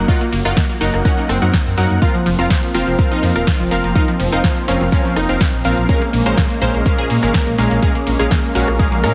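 A straight 4/4 pulse at 124 BPM drives this emotional, driving progressive house passage in Bb minor, cut from a longer piece, with a deep, up-front electronic kick and a house kit of hi-hat, rim click and punchy snare arriving at 0.1 s, both set in studio reverb. Beneath them a dark, rumbling detuned saw bass holds the low end with a beating, sustained tone, pumping through sidechain. A bright, lush unison pluck spins arpeggios through a phaser and dub echo, while punchy supersaw stabs spanning Bb2 to Gb5 cut through with their own dub echo and sidechain pumping. In the background a smooth, soft-attack analog pad with chorus sustains chords under a filter sweep, moving from Ebm/Gb to Fsus4 at 2.0 s and settling on Bbm7 at 5.9 s. The mix sits in light digital ambience with a heavily compressed, radio-like sound.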